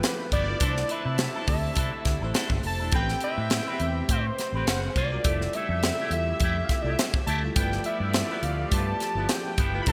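Slick and bittersweet, this short excerpt of polished 1980s jazz-funk pop moves at 104 BPM with a light sixteenth-note swing. A fat, detuned analog lead carries the melody over a warm horn section's second line, a glassy FM electric piano with ensemble chorus, and distant, floating sul tasto strings, while a bright, twangy envelope-filtered guitar riff, a round, dark fingered bass entering at 0.3 seconds, and a crisp fusion kit with a punchy kick, high-tuned snare and gated reverb drive chords from G13 through Am9 and Fmaj9, all bathed in a lush hall and a bright digital sheen.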